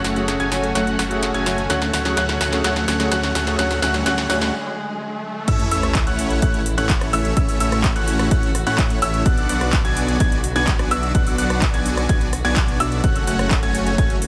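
A festival progressive house excerpt in A major at 127 BPM opens mid-build-up, with a rich chamber string section holding very quiet sustained chords beneath a warm baby grand piano playing high arpeggios with delay and a dense, compressed supersaw riff that sounds huge and airy through a low-pass filter and delay. A detuned saw bass adds a thick, beating, menacing low end, and the big-room dance drum kit works through a fill of punchy snare, metallic hats, handclaps, rim clicks and crash cymbal, while a felt-muted upright piano with audible action noise plays soft, intimate accompaniment until 4.4 seconds and a faint riser sweeps in underneath. The chords move from F#m to D before a short break at 4.5 seconds. At 5.5 seconds the drop lands with an impact and sub drop, and a punchy, tape-tinged electronic kick enters up front as the harmony shifts through A, Bm and back to F#m. The bass, supersaw and pianos all pump against the sidechain, and a light reverb gives the triumphant, anthemic mix a polished sheen.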